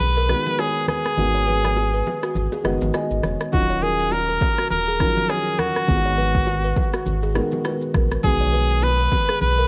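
A cassette home recording with light reverb carries this smooth, hypnotic afrobeats excerpt at 102 BPM, its sixteenths swung, moving through B6, Abm7 and Ebm9 chords. A brilliant, up-front trumpet sings the melody with vibrato and scooped notes through tape echo, over a dark, boxy concert grand piano with audible action noise, a round sine sub bass, and a deep house kit of deep kick, rim click and shaker. A buzzing, woody kalimba riff sits in the background from 0.2 seconds, very quiet congas and bongos add hard-handed acoustic color, and the opening break closes with a grand piano fill from 2.4 to 3.5 seconds.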